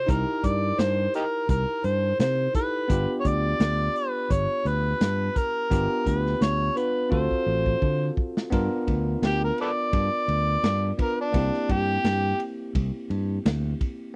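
Over a straight-eighth 85 BPM groove in 4/4 with a light sixteenth-note swing, this gritty, laid-back soul blues in G mixolydian, cut from a longer piece, sets a crunchy, saturated breakbeat kit with dark cymbals and a tight kick and a growly, punchy fingered electric bass up front beneath a bell-like, clean tine electric piano, while an amplified, overdriven harmonica with tongue slaps and scooped notes carries the jazz-style melody and takes a solo at 8.5 seconds after a drum fill at 7.1 seconds, all in a dry, close 1970s-style small-room sound.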